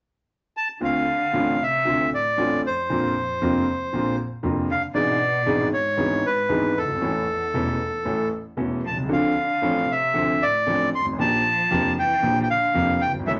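A reedy, bright bandoneon carries the melody up front in this melancholic, dramatic tango excerpt in D minor at 116 BPM with a rubato feel, entering at 0.6 seconds over a clear, smooth concert grand piano accompaniment with deep bass and an expressive bowed cello second line in the background with vibrato and portamento, all in a wet studio room as the chords move from Dm7 through Bbadd9, E7/G# and A.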